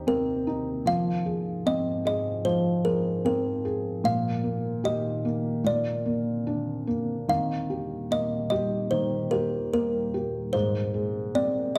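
A dark, warm production in a moderate recital hall reverb frames this sleepy, tender children's lullaby in Eb major, drifting at a rubato 74 BPM in 4/4 through a short passage taken from a longer piece. A woody, hollow-toned kalimba carries the melody up front with short thumb plucks, close and dry, while a soft, felt-muted upright piano gives mellow, intimate accompaniment with its action noise audible. Beneath them, a deep, moody ambient pad built from detuned sawtooth, sine and sub-octave layers holds slow-attack chords through chorus and its own reverb, as the harmony moves from Cm/Eb and Fm through Eb/Bb and Bbadd9 to Eb and Abadd9.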